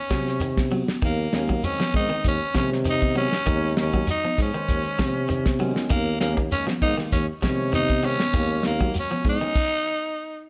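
Funky and intense, this afrobeat excerpt moves at 98 BPM in Eb dorian with a lightly swung sixteenth feel, resting on a single Ebm9 chord while a raspy, gritty tenor saxophone carries the melody up front with vibrato over a clear, punchy tuba bass line. A soul drum kit with dark cymbals, a tight kick and a rolled-off top drives the groove, joined by distant, high-tuned congas and a grainy shekere in the background. A twangy, slightly broken-up electric guitar plays arpeggios through spring reverb, and a barky tine electric piano enters very quietly at 1.3 s to add accompaniment.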